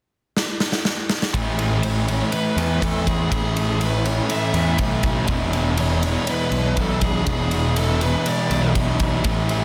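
A punchy drum fill from a big rock kit in a bright stone room opens this dreamy, blissful shoegaze and dream pop excerpt at 0.4 s, with bright cymbals and a medium-tuned snare sitting up front. At 1.3 s the full band lands on an A chord: an overdriven, compressed electric guitar riff washed in reverse reverb, a dark fuzz guitar tucked in the background with distortion and lush chorus, and a punchy, fuzzed bass played direct and amped. From 1.8 s a shadowy lead guitar through a small cranked amp sings a melody through analog delay over the dense, heavily limited modern master, and at 5.3 s the harmony shifts to E5.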